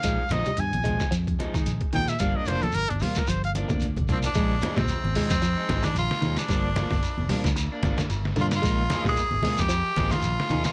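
A swung sixteenth-note afrobeat groove from a muffled, pitched-down sampler-style drum kit with a thumpy kick, a dark, round fingered bass, twangy slightly broken-up electric guitars (one playing phaser-coloured arpeggios, the other spring-reverbed stabs), and grainy shekere and low-tuned congas in the background sets a hypnotic, funky mood as a bright trumpet solos up front until a drum fill at 3.7 seconds hands the melody to a raspy, forceful tenor saxophone from 4.1 seconds in this dry excerpt from a longer piece.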